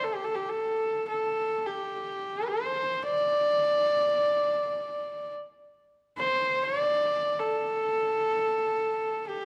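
Galloping and proud, this brief excerpt of traditional Mongolian folk music in free time features a lone horsehead fiddle, up front, clear, nasal and husky with an airy bow, light vibrato and portamento, ringing in a moderate recital-hall reverb within a dark production.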